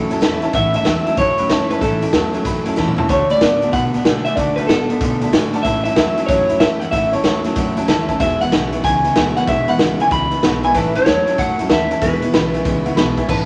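Rockabilly at 188 BPM in 4/4 with a moderate swing on the eighths, this upbeat, rowdy cut in A major moves through A, D and E, sitting a hair under standard pitch. Up front, an electric guitar through a small old amp carries the melody with a twangy, slightly broken-up bite, while a second guitar through the same kind of amp plays a low riff further back. A raw garage drum kit pushes hard beside the lead, its punchy kick, medium-tuned snare, hi-hat, toms and crash sounding gritty and saturated with a rolled-off top. In the background, a full-bodied jumbo steel-string acoustic guitar is picked for accompaniment, a pizzicato upright bass on gut strings gives a woody, thumpy low end, and a vintage upright piano adds short-sustained accompaniment with quick fills at 0.0 and 5.2 seconds. A drum fill at 2.8 seconds leads into the D chord, and a moderate small-room reverb gives the whole take a close, lively space.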